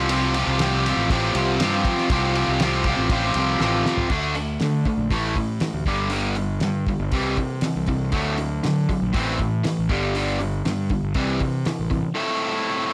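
A straight 4/4 pulse at 119 BPM drives this short, cool and restless indie rock clip, cut from a longer piece. A cloth-damped drum kit sits dry and dark, with a fat snare, a tight kick, dark cymbals and a rolled-off top across hi-hat, ride, crash and toms, and a fill from 3.6 to 4.1 seconds carries the opening into a longer second passage. Up front, a raw, bright, double-tracked garage guitar plays a picked, overdriven riff from G2 to A4, continuing alone briefly until 12.9 seconds. Beneath it, a fingered electric bass adds growly fuzz and transformer saturation. The harmony opens on Csus4, then moves through D5, A5, G5, C, D and Am. Light reverb and a blown-out, overdriven master give the whole recording a rough, saturated edge.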